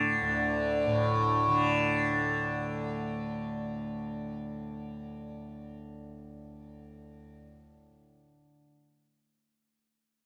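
Longing and meditative, this brief fragment of a longer Hindustani classical piece unfolds in free time, tuned to A4 = 439 Hz. A very quiet, plectrum-plucked sitar, bright and buzzing with shimmering sympathetic strings, sounds a melody around D4 until 2.3 seconds. A softly plucked tanpura drone, shimmering and up front between D2 and D3, sounds from the very start and carries on to 8.6 seconds, all heard live in one room with moderate large-studio reverb.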